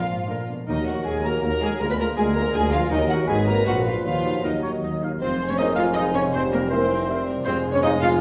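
Set in a wet recital hall with a church-like resonance, this short, cinematic cue is playful and whimsical, with a quirky, mischievous streak, moving at 160 BPM in a straight 3/4 in Eb minor. A chamber violin section carries the melody with a soft, sul tasto touch and light vibrato, while a darker violin section, a smooth dark clarinet, an airy, hollow silver flute and a solo oboe weave second lines around it. Beneath them a very quiet viola section and a distant, roomy bassoon fill in the accompaniment, a tight French horn section holds mellow sustained chords, and a thumb-plucked concert harp rings out arpeggios. The bass is shared by a woody cello section from the start, joined at 0.7 seconds by a punchy tuba and a floating, far-off double bass section. At 5.2 seconds the harmony shifts toward F minor and a marimba played with medium hard mallets enters with a mid-forward melody, adding a warm color to the orchestral texture.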